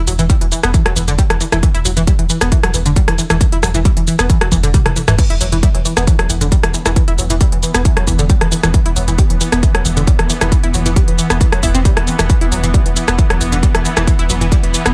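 A saturated, deep sub bass on E1 opens this dark, hypnotic slice of driving peak-time techno at 135 BPM, joined at once by a tight, detuned sawtooth riff with chorus and tape echo, an up-front electronic kit with smooth hats, rim clicks, shaker, toms and crash, and a heavy layered kick, the bass and riff pumping together, before a drum fill at 4.5 seconds leads into a tense, swarming sine drone that enters at 5.8 seconds.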